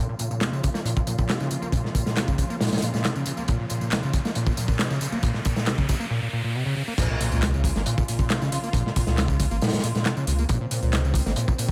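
A squelchy, overdriven acid bass riff leads this funky, swaggering breakbeat excerpt in Bb minor at 137 BPM, driven by a crunchy, up-front breakbeat kit layered with a metallic-hatted house kit, while lush, woody strings hold sidechain-pumped chords, soft bongos and congas drop out at 5.9 seconds, a background riser builds toward a brief break, and a deep, thick sub bass drops in with the impact at 7.0 seconds under light studio reverb.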